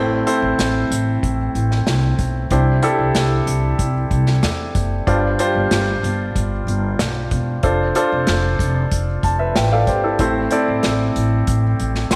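Set in a moderate echo-chamber reverb with small-room ambience, this warm, anthemic piano-driven pop excerpt pairs a clear, intimate concert grand, up front with audible action noise and long sustain, with a woody pizzicato upright bass and an acoustic drum kit played with bundle sticks that enters at 0.3 s with a punchy kick and medium-tuned snare, moving through Am, Cadd9, G7sus4 and Dm7/F before the piano adds a fill at 8.9 s that leads back to Am.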